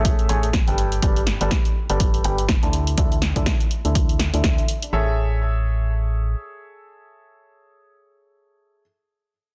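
Joyful, feel-good piano house with a swung 4/4 groove, heard in a short cut from a longer piece where a bright, woody upright piano riff pumps against the sidechain through a low-pass filter sweep and digital delay, moving through Amaj7, Gadd9 and Dsus2. A hollow, organ-like FM bass with a fast, decaying attack also pumps beneath, while a dry, punchy analog drum machine supplies hi-hat and snare alongside an electronic kick until about 4.9 seconds. The bass carries on with the piano until 6.4 seconds, and the piano then continues to 8.8 seconds as the harmony returns to Amaj7, all set in light reverb and studio ambience with a dense, heavily limited modern master.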